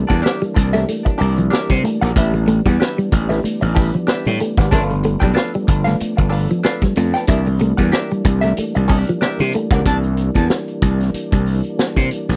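Gritty and energetic, this short funk cut from a longer piece rides a 16th-note swing in 4/4 with a dry, close sound in the manner of a 1970s studio. Up front, an overdriven, growly slap bass and a punchy, saturated vintage drum kit with a rolled-off top drive the groove on hi-hat, kick and snare. A clean, fingered electric guitar plays a compressed riff through a phaser until about 9.7 seconds, while a dark hollow-body jazz guitar adds picked accompaniment through a wah pedal. Back in the mix, a mellow, round tonewheel organ holds sustained chords through a slow rotary speaker with light overdrive and chorus vibrato, moving from C9 to A9sus4, G9 and back to C9. A clear, distant baritone saxophone with tape echo touches a single brief note at 4.7 and again at 9.9 seconds.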